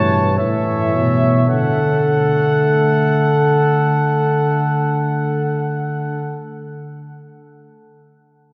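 At a slow 52 BPM in a straight 4/4, this stately, elegant fragment of a classical brass canzona in D major eases back over its first 1.5 seconds before settling onto a D chord after opening on A. The clear trumpet carries the melody between E5 and A5 with a light vibrato and a smooth top. Beneath it, the punchy flugelhorn shapes a warm second line in the A4 to C#5 range. The euphonium sits in the background with soft-attacked accompaniment, while the mellow tuba stands up front with a rounded, gently struck bass between G2 and D3. All four play throughout the 6.4-second excerpt, heard from far back in a wet cathedral whose long, darkened reverb tail blooms around the ensemble.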